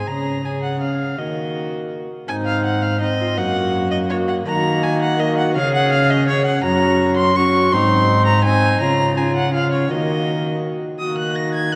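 Solemn and rustic, this short passage from a renaissance-style consort dance moves at 165 BPM in 3/4 in Eb dorian, with a nasal, gut-strung violin carrying the melody up front over a dark, reedy cello bass. A single bowed viola adds a distant second line with light vibrato, while a soft-attack trombone supplies warm accompaniment further back. A church reverb with a 3.6-second tail gives the consort a wet, spacious sound.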